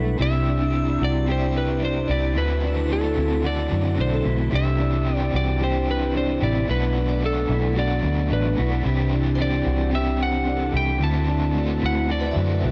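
Ethereal and floating, this dream pop fragment from a longer piece sets a slide guitar melody, entering at 0.2 s with fingerpicks and a slightly broken-up tone through analog delay, over a crunchy overdriven guitar wrapped in tremolo and lush chorus, a soft flute-like tonewheel organ turning on a slow rotary speaker, dark clean electric guitar arpeggios with analog chorus and delay, a round, punchy, foam-muted bass up front, and a faint FM bell shimmering with a long decaying halo, all captured in a dry, gritty cassette-tape recording touched by digital ambience.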